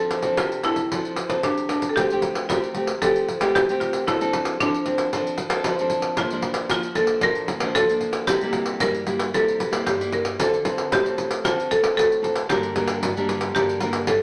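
Set in a wet studio reverb, this festive, lively samba and choro fragment, cut from a longer piece, features an up-front nylon-string guitar, fingerpicked and classical in character, with the warm ring of fresh strings carrying the accompaniment from the first moment. A buzzing marimba played with hard mallets takes the second line, its woody, dry, percussive tone sitting airy beside the guitar, while a jingly pandeiro played with soft hands joins at 0.1 s, close and present as if in a small room. The harmony moves from F6 through Fadd9, Bb and C7 before settling on Dm7 and Gm near the end.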